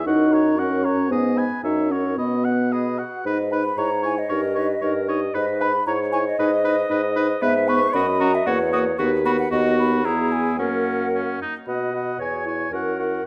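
A hollow, mellow silver flute carries the melody with vibrato in this urgent, stormy excerpt from a quick classical-period wind quintet movement in 2/4 at 114 BPM, over a clear oboe second line, a vintage-toned clarinet and a dark French horn in accompaniment, and a bassoon bass placed up front with its own vibrato, all in a reverberant recital hall, moving from B major into G# minor at 3.3 s and back to B major at 7.4 s.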